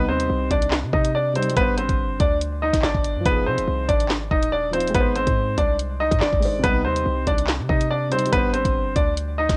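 A half-time drill groove at 142 BPM in 4/4 drives this tense, dark hip hop excerpt, with a drill drum kit of knocking kick, sharp snare, handclaps and bright hi-hats entering at 0.2 s up front, carrying vintage 12-bit sampler grit and cassette tape colour. A hard-hitting 808-style bass, punchy and heavy with a sine body, a noise layer and a fast attack that decays, sits under the chords as they move through Cm, Gsus4, Fm7 and Ab in C harmonic minor. A clear, woody upright piano carries the melody up front, intimate and present with audible action noise and long sustain, while a mellow concert grand with deep bass and short sustain plays accompaniment in the background, both pianos low-pass filtered and softened by cassette tape in a dry home recording.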